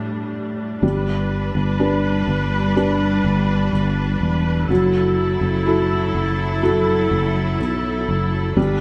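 A growly, up-front fretless electric bass enters at 0.8 seconds beneath a lush, vibrato-rich bowed string section and a soft, felt-muted upright piano with audible action noise, carrying this longing, melancholic 62 BPM pop ballad fragment through A7sus4, G and F#m7 chords in a stone room with a 1.3-second reverb, tuned to A4 = 438 Hz.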